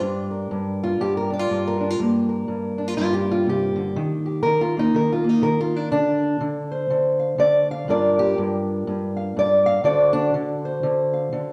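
A fingerpicked steel-string acoustic guitar, dark and boxy with a parlour character, plays alone and up front from the start, carrying a mournful, smoky acoustic country blues in G minor at 122 BPM with a swung 4/4 feel. Across 11.5 seconds it moves through Gm7, Eb5 and Dm7, returning to Gm7 before landing on a tense D7#9. A wet recital-hall reverb with a 1.4-second tail surrounds the guitar, giving it the ring of a church or concert hall in this short cut from a longer piece.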